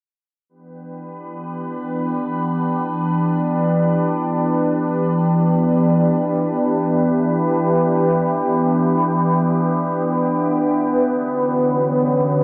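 An evolving wavetable pad fades in at 0.9 seconds with a slow attack, holding a sustained Em7 chord that spans D3 to B4. This is ambient music in free time, tuned to A4 = 445 Hz, and its mood is cosmic and expansive. The pad sits up front, its detuned, sine-like tone morphing and warbling with a vintage, mellow character, shaded by a phaser and its own built-in reverb. Around it, a huge, wet ambient reverb with a 7.4-second decay gives the production a dark, spacious depth. At 11.0 seconds the harmony moves to Bmadd9, and the pad's long release carries the sound to the close of this fragment of a longer piece at 12.4 seconds.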